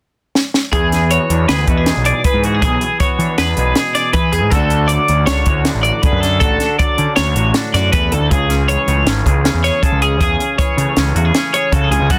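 This math rock and midwest emo excerpt has a dense, heavily limited modern master with little reverb, and its mood is intricate and bright in 5/4. A compact cocktail drum kit opens with a short fill at 0.4 seconds, its dry, high-tuned snare and punchy kick sitting up front alongside the hi-hat. At 0.7 seconds the other parts arrive together and carry on to the end at 12.2 seconds. A clean, picked twelve-string electric guitar plays arpeggios up front, sparkling with lush chorus. Beneath it, a fingered, twangy electric guitar adds compressed accompaniment, and a warm fuzz bass with overdrive drives the low end, also placed up front. The harmony moves from E7 through Dmaj7 to Amaj7.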